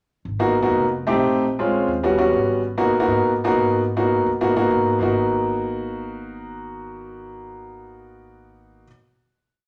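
An upright bass opens at 0.2 s, plucked with a thumpy, steel-string tone as it plays a tumbao line that anticipates the chords, and a clear upright piano joins at 0.4 s. This short, complete piece of Afro-Cuban jazz moves at a brisk 202 BPM in straight 4/4, in G# minor, with a sophisticated, sultry mood. The piano sits up front and sounds boxy and intimate, its action noise audible as it plays syncopated chord stabs in rootless voicings with long sustain. The bass sits lower in the mix beneath the piano. The harmony moves from G#m9 through F7, A#m7 and D#7alt before returning to G#m9, and from 5.0 s the piece settles on a final chord, all set in a wet, large studio reverb.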